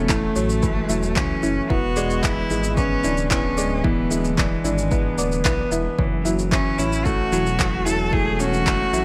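Hypnotic, cinematic piano and strings electronica at 112 BPM in F# minor, moving from F#m7 to E7 and back, where an intense bowed solo cello carries the vibrato-laced melody over an up-front concert grand piano riff with long sustain and digital delay, a dark, rumbling detuned saw bass pumping under the sidechain, mellow chorused plucked arpeggios tucked in the background, overdriven electronic handclaps and shaker, and a deep, tape-tinged layered kick, all set in light digital ambience in this fragment of a longer piece.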